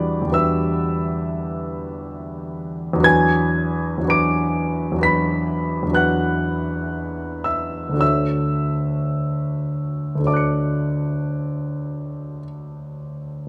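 Moving in a flexible five-beat metre with generous rubato, this short passage of classical, impressionist solo piano is cut from a longer piece. The mood is luminous and serene. A single grand piano plays throughout, spanning D2 up to D7. Its tone is clear, polished and intimate, with long sustain and the sound of its action audible up close. The harmony moves from Em9 to E9 at 3.0 seconds and arrives at Dmaj7 at 8.0 seconds, while close, detailed microphones keep the instrument present and up front within a moderate recital hall reverb.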